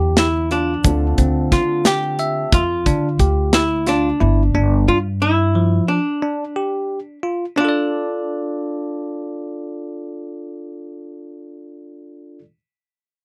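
Intricate and driving, this dry, close 1970s-style progressive instrumental excerpt in D dorian moves in 5/8 at 179 BPM in eighths, with a clean, hollow-body archtop guitar carrying the melody over bell-like tine electric piano arpeggios, a mellow, dark baby grand piano accompanying until 2.5 s, a punchy studio drum kit of kick, medium-tuned snare and hi-hat stopping at 4.0 s, a very quiet, grainy tube shaker, and a woody pizzicato upright bass playing up front until 5.8 s as the harmony moves from Em7 and Dm7 to G5 and finally Dm.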